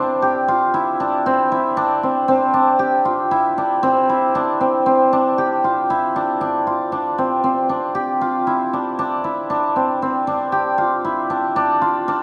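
Pensive and restless, this short excerpt of contemporary instrumental music moves at 116 BPM in a straight 5/4, tuned to A4 = 438 Hz and resting on a Cadd9 chord. A lone acoustic cimbalom sits up front, its hammered, shimmering tone ringing within the middle register from C4 to G4. A wet concert-hall reverb with a 2.0-second decay frames the instrument, heard from further back in the room, as the passage shifts into a new section at 6.4 seconds.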